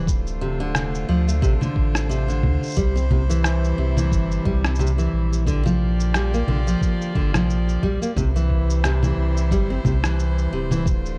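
This delicate, intimate folktronica fragment, cut from a longer piece, opens with a chamber string quartet holding sustained chords, one player per line, their bowed gut-string tone reedy and period in style. At the same moment a full-bodied nylon-string guitar sits up front with fingerpicked arpeggios in a deep classical voice, trailed by delay, while a round sine sub bass with a fast attack and mellow sustain anchors the low end. From 0.1 seconds a muffled, thumpy electronic kick sits in the background beside a compressed, pitched-down kit of shaker, rim click and congas, both re-recorded in a large room for a sampler-like character, moving with a gentle swing. The harmony cycles through Dm7, C, Bb6 and back to C. The production is dark and warm, with little reverb, keeping the guitar and bass close and intimate.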